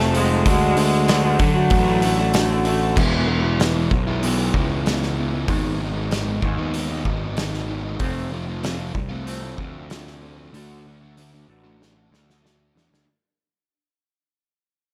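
A straight 4/4 pulse at 95 BPM drives this bittersweet, anthemic stretch of quiet-loud alternative rock, cut from a longer piece. A bright, focused cello, distant and bowed with vibrato by one player, carries a short tape-echoed melody for only the first 2.3 seconds, while a twangy, slightly broken-up electric guitar through a small old amp plays lo-fi arpeggios with tape echo. Underneath, a growly fuzz bass sits up front with overdrive, and a loose indie drum kit with a punchy kick, medium-tuned snare, dark cymbals and a pumping room sound keeps time on kick, snare, hi-hat and crash. At 3.0 seconds a double-tracked fuzz guitar with distortion enters up front on a dark riff, as the harmony moves from D through E, G#m and F back to D. The passage fades out from that point, and a drum fill closes it from 11.8 seconds, all set in light reverb.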